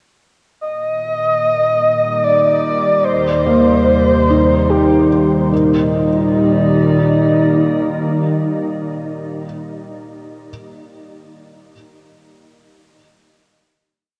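Ambient music in a warm, weightless mood, moving in a gentle triple metre through a short chord sequence that settles on a final chord. A breathy, flute-like synth lead carries arching motif-based phrases up front over a warbling tape-like pad that fades in during the opening, while an organ-like detuned drone sits in the background and fades out across the same stretch. A felt-muted upright piano with audible action noise enters at 3.5 seconds with soft arpeggios in drifting loops and lingers alone until 10.5 seconds, all bathed in a huge, wet reverb and the worn pitch drift of old cassette tape.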